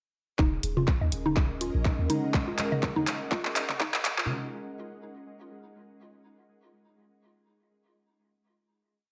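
Minimal techno at 123 BPM in 4/4 with a light 16th-note swing, this short, complete piece sits in Eb minor on a single Ebm7 chord and feels sparse and quirky, functioning entirely as a build with a drum fill and filter sweeps running from 0.4 to 4.3 seconds. A tight, tape-warm electronic kick sits up front with a four-on-the-floor pulse, joined by a dry, overdriven analog drum machine playing closed hats and claps on the backbeat, while electronic toms re-recorded in a large room add clicks and blips in cross rhythm. A deep, punchy sine sub bass with a pitch-drop attack and tube saturation plays a syncopated riff until 3.6 seconds, pumping against the kick. The woody, round synth pluck carries a 7-step sequence that drifts against the bar, colored by chorus and delay and swept by a filter. At 1.1 seconds an ethereal, airy pad enters with slowly shifting chords, and a faint, bright gated texture pulses in tempo beneath it holding a high note. 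The mix sits in a moderate digital room.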